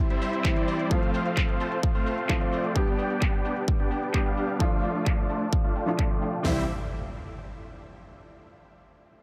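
A soft, muted upright piano with sidechain pumping and delay opens this euphoric, uplifting festival progressive house excerpt, joined by a very quiet, detuned unison pad, while bright, huge supersaw chords carry the riff through a filter sweep, pumping and echoing over chords that move from C through F, G and Dm. A punchy, tape-warm big-room kit with a huge snare sits up front, layered with an overdriven house kit of metallic hats, cabasa and handclaps re-recorded in a large room, and the mix rests in light digital ambience. At 6.4 seconds the chords return to C as a fat analog bass briefly enters in the background, and an electronic impact sounds from 6.5 seconds to close.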